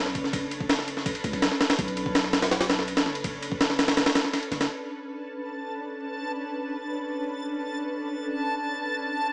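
A straight jungle breakbeat enters just after the downbeat in this drum and bass excerpt, its sampler-style kit of thumpy kick, high-tuned snare and ride cymbal sounding compressed, pitched up and gritty, with a tape-warm edge that sits up front. Beneath it, a long, deep 808-style sine bass hits with a fast attack and decays in a mellow way, and both drums and bass drop out at 4.7 seconds. A cloudy granular pad holds sustained chords throughout, its blurred, full-bodied sine tone evolving under its own reverb. From 5.5 seconds a reversed, dreamy triangle texture swells high above the pad, bright and soft-edged with a long release. Vinyl crackle and a small-speaker sound give the whole piece a raw, nostalgic character.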